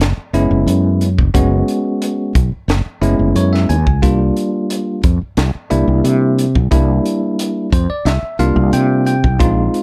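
A straight 4/4 groove at 89 BPM from a crisp fusion drum kit, with a high-tuned snare, punchy kick and hi-hat in a small, pumping room, and a dark, round fretless electric bass together drive this bright, funky electric jazz fusion excerpt, while a bell-like, clean tine electric piano enters at 0.3 seconds over Gb9sus4 and C9sus4 chords and adds fills at 3.0 and 7.4 seconds, with all three parts up front and little reverb.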